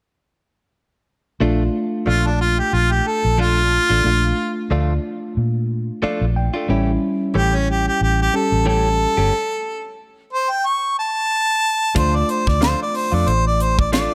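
This straight-eighth soul blues excerpt has a brooding, soulful mood, with a light shuffle in its subdivisions. A worn, slightly out-of-tune tine electric piano, lightly overdriven through its built-in speakers, lays down the accompaniment, while a clean, compressed electric guitar recorded direct adds picked stabs colored by phaser. Underneath, a vintage muted fingered electric bass sits dark, round and up front. A harmonica carries the melody as a jazz-style solo with soft attacks, scooped notes and light vibrato, and the electric piano steps out with a brief fill along the way. A stop breaks the groove at 9.3 seconds, and at 12.0 seconds a tight funk drum kit enters, dry and polished, with a high-tuned snare, hi-hat and a tight kick, all set in light reverb and studio ambience.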